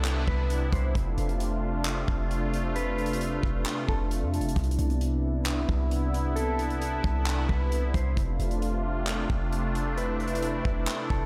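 This dreamy, blissful slice of atmospheric cloud-rap opens with every part at once: a sweeping, airy sawtooth pad, a deep 808-style bass, a modern studio drum kit and a mellow electric guitar, all settling into an unhurried half-time feel. The pad holds sustained chords that drift between Cmaj9 and F6, its detuned, evolving tone brightened by chorus and set breathing by sidechain pumping. Underneath, the boomy, sine-based bass sits up front with a fast attack that decays, while the drums bring a punchy kick, hi-hat and handclaps with an acoustic studio-room character. Softer in the mix, the dark, clean electric guitar plays a fingered melody in a narrow upper register, colored by a phaser and a diffuse ambient delay. A lush hall reverb soaks the whole blend, giving this fragment of a longer piece its hazy, floating glow until it ends at 11.3 seconds.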